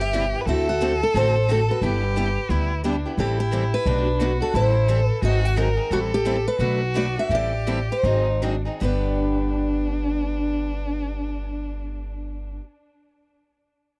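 A picked steel-string acoustic guitar carries the melody in this playful, swinging fragment of acoustic string swing, joined by a bowed violin playing a focused, boxy second line with vibrato and tape echo. A woody, thumpy pizzicato upright bass on gut strings sits up front, while two picked parlour guitars, one bright with fresh strings, provide accompaniment in the background. The dry, close 1970s-style studio sound carries light reverb, and the music slows down between 5.9 and 8.8 seconds before landing on a G chord.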